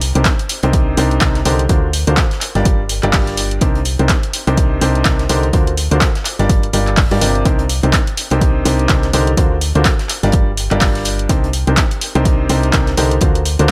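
Piano house with an energetic, bittersweet mood and a lightly swung groove, cut from a longer piece. A bright, woody upright piano carries the riff from 0.2 seconds, sitting up front with a low-pass filter, tape echo and sidechain pumping as it cycles through Cm9, D7alt and Gm7 chords. Beneath it, a round, dark FM bass with a fast attack and tube saturation pumps along, while an analog electronic kick drum enters at 0.3 seconds with a tape-colored thump re-recorded in a small room. A punchy analog drum machine adds handclaps and hi-hat, and a very quiet acoustic studio kit contributes hi-hat and a medium-tuned snare with a rolled-off top. The mix is dry and close, with little reverb.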